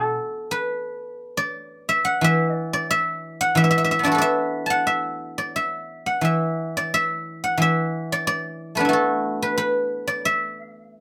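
A solo guzheng opens this short cut from a longer Chinese traditional piece and plays alone from 0.0 to 11.0 seconds. The mood is elegant and flowing, and the rubato phrasing lets the 2/4 metre breathe freely. Played with fingerpicks, the zither has a silvery, ringing tone that spans from its low register up into its high range. The instrument sits up front, captured by close, detailed microphones with a light touch of reverb around it. The tuning rests slightly below standard pitch, with A tuned to 438 Hz.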